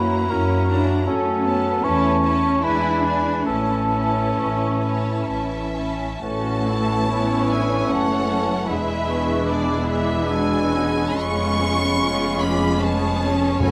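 In a rubato 3/4, this elegiac, melancholic slow romantic movement for symphony orchestra sets a rich, vibrato-laden violin section on the melody above a soft-attack background violin line, pure flutes, a mellow cor anglais, a very quiet clear clarinet and a distant bassoon, with lush violas, sustained French horn chords, focused cellos and an intense double bass section beneath, while a round soft-mallet timpani stroke arrives only at 13.6 s, all captured up close in a moderate recital hall reverb.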